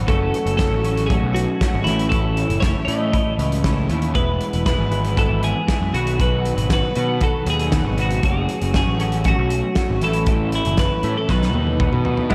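A dreamy mix soaked in cathedral reverb frames this carefree, jangly indie rock passage at 118 BPM in 4/4, moving through F#m, A, E and B. A compressed twelve-string electric guitar rings out a chorused riff while a second, bright and twangy twelve-string carries the melody through analog delay. Beneath them sit a fuzzy, overdriven picked bass and a loose acoustic drum kit with a fat snare and punchy kick, which plays a fill from 11.3 s before a clean, fingered electric guitar with chorus arrives up front at 12.3 s.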